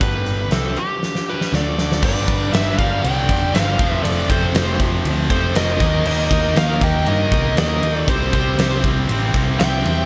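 Hard rock at 119 BPM in a straight 4/4, swaggering and energetic, this short clip is cut from a longer piece. A huge arena drum kit sits up front with a fat snare, punchy kick and bright cymbals, its gated reverb and pumping room sound driving the groove, and a fill from 1.0 to 2.0 seconds sets up the next section. Underneath, a hollow-body short-scale picked bass plays a round, punchy line, while two distorted electric guitars play a compressed, picked riff, one in the background and one very quiet, joined at 2.0 seconds by a double-tracked, high-gain heavy guitar on the same riff. On top, a bluesy overdriven lead guitar carries the dark melody, and from 1.3 seconds a fuzz lead guitar adds a second line treated with digital delay, tucked in the background. The chords move from G through D5, G, F and Eb5 to C, all wrapped in a lush hall reverb with a bright 1980s-style digital sheen.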